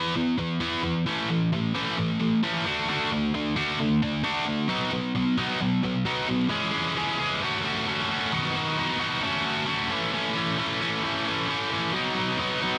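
Rock at 132 BPM in a straight 4/4, this upbeat, carefree excerpt features a lone high-gain distorted electric guitar, bright, picked and double-tracked, playing up front through a close, dry 1970s-style studio sound with light reverb, moving from E5 through A/E, D and B before a second section from 6.5 seconds shifts to C#m, F#m, B and A, all tuned slightly sharp at A4 = 445 Hz.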